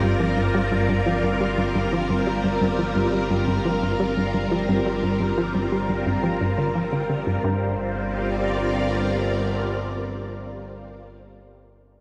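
A lush hall reverb with a long 2.8-second tail bathes this hypnotic, cosmic piece of ambient, sequencer-driven space music, cut from a longer work and moving at 87 BPM in 4/4 in G minor over a single G minor chord. Up front, a bright vintage string machine holds sustained full-ensemble chords with a sub octave, soft attack, phaser and ensemble chorus, and it carries on to the close at 11.0 seconds. Beneath it, a punchy, funky analog bass plays a riff of sawtooth and square-wave filter plucks with fast attacks and decaying notes, colored by analog delay and a filter sweep before it stops at 7.8 seconds. A dark, nasal drone sits on a low G, evolving through pulse-width modulation with a slow attack, long release and chorus, and it drops out before the strings finish. In the background, a resonant, bubbling texture of random filter steps hovers on a high Bb with chorus and its own reverb. 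Once the opening section gives way at 7.4 seconds, the texture and bass soon fall away, leaving the strings and drone together, and then the strings alone.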